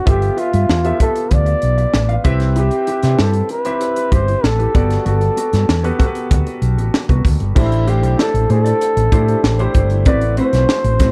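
A dry, polished mix carries this bittersweet, urban excerpt of 1980s jazz-funk pop at 96 BPM in a straight 4/4, where a breathy, whispered flugelhorn sings an intimate, vibrato-laced jazz melody up front over natural grand piano with subtle chorus, a dark, clean electric guitar riff with lush chorus tucked in the background, a round, punchy fretless bass, and a crisp fusion kit with a high-tuned snare and punchy kick pumping in a small room, moving through chords from G13 to Am69.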